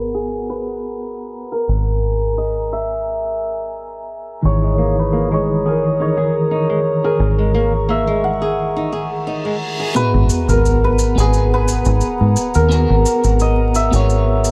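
A straight 4/4 trip hop groove, melancholic and smoky and cut from a longer piece, rests on a round, punchy fingered dub bass up front while a shimmering, hammered santur carries the melody through tape echo. A slightly broken-up electric guitar with harmonic tremolo and a nasal, detuned analog pad with chorus hold the chords, and a fingerpicked flamenco guitar, finger squeak and vintage sampler grit intact, adds echoing arpeggios from 4.6 to 10.0 seconds. A reverse cymbal and sub drop mark the turn at 10.0 seconds, where maracas enter, all set in a dry, gritty small room with vinyl crackle and a low-pass filter sweep.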